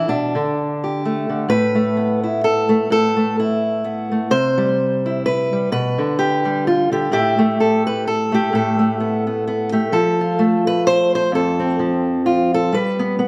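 A fingerpicked steel-string acoustic guitar, dark and up front with audible finger squeak, plays alone through this reflective, wistful folk excerpt in A minor at 128 BPM in a lightly swung 3/4, moving through Gadd9/B, Asus2, C and G/B before shifting to F at 9.9 seconds and G at 12.7 seconds, all set in a moderate scoring-stage reverb.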